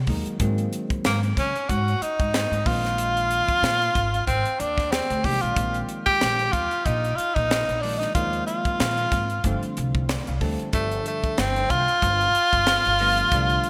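A 4/4 groove at 93 BPM swings its sixteenth notes lightly, giving this intense, funky slice of electric jazz fusion a loose, rolling pulse. The crisp drum kit lays down a high-tuned snare, a tight kick and hi-hat, its polished, airy sound carrying a gated reverb. The upright bass plays pizzicato on steel strings with a woody tone, and the tine electric piano comps in bell-like, clean voicings under a subtle chorus over sus chords that move from Ab7sus2 to Bb9sus4 and later G9sus4. From 1.1 s a bright tenor saxophone takes the solo up front, singing jazz lines with vibrato and a soft attack in its middle register. The electric piano steps forward with a short fill at 9.8 s. A lush hall reverb and bright 1980s-style digital production wrap the whole passage, which is cut from a longer piece.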